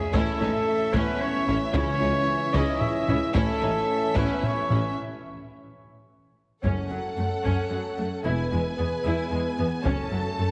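In a straight three-four pulse, this dark, epic orchestral film cue sets lush bowed violins on the melody over a focused second violin line, distant violas, close studio cellos and very quiet double basses, with mellow, roomy French horns, background trombones, a smooth-topped tuba and bright up-front trumpet stabs until 5.0 s, while compressed, saturated taiko drums hit hard alongside a round timpani touch at 1.7 s, the whole cue bathed in concert hall reverb and heavy radio-style multiband processing before a break gives way to a new section at 6.6 s.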